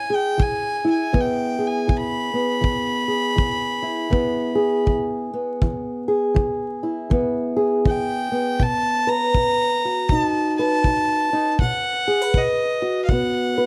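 Acoustic country blues in E major, this rollicking, gritty fragment of a longer piece moves at 80 BPM in 4/4 with a swing on the eighth notes, tuned slightly low to A4 = 438 Hz. A bowed fiddle carries the melody up front, its rich, reedy gut-string tone sitting high between D#5 and B5. Beneath it, an old ladder-braced acoustic guitar is fingerpicked on aged strings, giving a dark, woody, boxy accompaniment that spans B2 to B4. A tight acoustic kick drum, played with brushes in a studio room, comes in at 0.4 seconds and drops out at 13.3 seconds. The harmony sits on E before moving to B at 8.6 seconds. Close, detailed miking with little reverb and a layer of vinyl crackle gives the recording an intimate, vintage texture.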